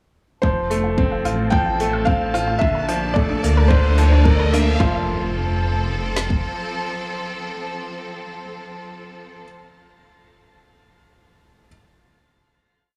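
At 0.4 seconds this tender, luminous piano-and-strings electronica piece opens at 110 BPM in F major. A muted felt upright piano sings a soft motif-based melody over a brilliant baby grand's arpeggiated riff, lush bowed strings with sidechain pumping and a filter sweep, and a very quiet, round analog pluck arpeggio drifting against the bar. Beneath them a rumbling, detuned saw bass and a deep house kit keep a four-on-the-floor kick with a woody snare, joined at 0.7 seconds by distant, restrained brushed hi-hats. From 2.4 seconds a background riser and impact lift the build into a final F chord at 4.8 seconds. Both pianos carry tape echo and shimmer reverb throughout, and the baby grand rings on alone until 11.7 seconds.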